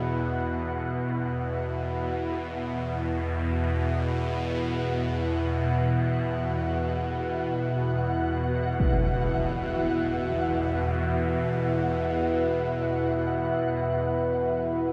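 Dark ambient drone in free time, dark and desolate, where an up-front, bright bowed-like drone with a tense, string-like edge and phaser sits low beneath a deep, moody pad with chorus holding sustained chords, while a flickering, grainy texture fades in from 0.2 seconds and a huge impact lands at 8.8 seconds, all bathed in a cavernous cathedral reverb.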